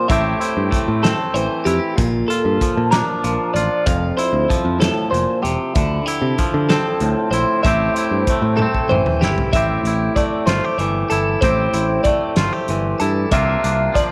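A twangy, up-front electric guitar anchors this playful, wistful math rock and midwest emo excerpt, its clean, bright, compressed tone carrying the accompaniment in a lilting 6/8 with a straight feel. Above it, a twelve-string electric guitar spins sparkling, picked arpeggios through a phaser, adding a shimmering top layer. A picked electric bass sits underneath with a warm, direct sound and a touch of transformer saturation, while a loose indie drum kit brings a punchy kick, fat snare, hi-hat and toms in a pumping studio room. The harmony drifts through Am7, Bbmaj7, Fmaj9 and Dm11 before returning to Am7, and a drum fill from 8.6 to 9.5 seconds ushers in a new section that reaches C9sus4 at 13.3 seconds. Light reverb and small room ambience give the whole piece an intimate, close-up feel.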